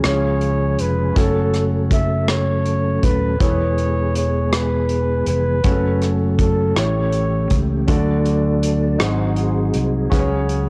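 A slow 6/8 pulse carries this soulful, fervent gospel excerpt, with a natural country drum kit keeping time on hi-hat, rim click and a punchy kick alongside an amped, up-front fingered electric bass. A clear grand piano with audible action noise plays the accompaniment while a mellow, flute-like tonewheel organ holds sustained chords through a slow rotary speaker and chorus vibrato, its key click audible. A dark, breathy trumpet sings the jazz-style melody from 0.1 to 7.6 seconds with scooped notes, all set in a small room with the soft haze of a home cassette recording.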